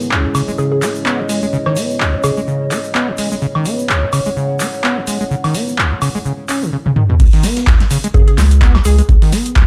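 Acid house at 127 BPM in C# minor, raw and gritty, swinging its 16ths over a dark production with light reverb in this fragment cut from a longer piece. A squelchy, resonant sawtooth acid bass carries the riff up front through overdrive, lush chorus and tape echo, while an electro analog drum machine with punchy snare, metallic hats, handclaps, toms, woodblock and crash runs under a filter sweep. Behind them a moody, nasal analog pad holds sustained C#m chords with sidechain pumping, joined by a warbling, nostalgic lo-fi tape-like pad, a grainy egg shaker sits in the background, and a hollow, bouncy square pluck adds melody from 0.6 seconds with analog chorus and tape echo. Both pads drop away before 7 seconds, and after a drum fill the drop lands at 7.2 seconds. At the drop a deep electronic kick and a thick, saturated sine sub bass join in with the harmony gone, while a very quiet, pitched-up breakbeat kit adds compressed hi-hat and snare. 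The pluck returns at 8.1 seconds.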